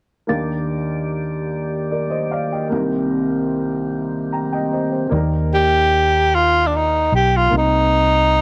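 A breathy, whispered tenor saxophone carries an intimate solo melody from 5.5 s in this uplifting, soulful gospel excerpt, set in a slow 6/8 at 50 BPM in Eb major over a woody, polished upright piano that plays throughout and a mellow, flute-like tonewheel organ with key click and a fast rotary speaker that holds chords until 5.1 s, when a dark, round fingered electric bass enters, with the harmony moving between Ebmaj7 and Cm7 inside a light studio reverb.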